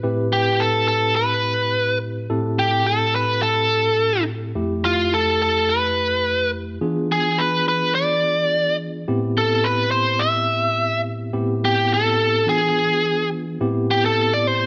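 In a straight 4/4 feel, this soulful, brooding blues excerpt sets a clean tine electric piano, heard through its built-in speakers, accompanying over Am9, Fmaj7 and E7b9 chords, beneath a biting, bright overdriven lead guitar with slapback echo that carries the melody from 0.3 seconds and breaks into a brief solo at 13.6 seconds, both parts up front in a moderate echo-chamber reverb.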